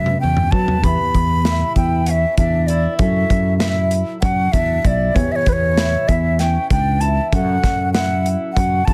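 An airy, up-front wooden flute with vibrato, a crisp attack and an unsteady quality carries the melody through plate reverb and delay in this brooding, driving progressive instrumental in 7/8 at 194 BPM (eighths) in E dorian. From the opening drum fill onward, a warm fretless electric bass with lush chorus sits forward while a boxy, fingerpicked twelve-string acoustic guitar shimmers in octave-doubled arpeggios with audible finger squeak. A mellow, worn grand piano lingers in the background, and a smooth studio drum kit with a tight kick and a rolled-off top keeps the uneven meter moving. The chords shift between F#m7 and Em in a dense, heavily limited master, cut from a longer piece.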